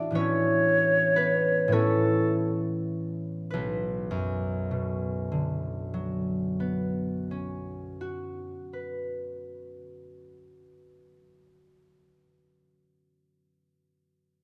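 Classical impressionist duo for flute and harp in B minor, wistful and mysterious, moving in a slow, rubato 12/8 that eases back over its opening 3.5 seconds, as a mellow, airy silver flute with vibrato and a soft attack sings a brief phrase up front from 0.2 to 2.6 seconds over ringing, fingerpicked concert harp that carries on alone through to 12.2 seconds, the harmony shifting from Aadd9 to Bmadd9, all bathed in a wet recital-hall reverb.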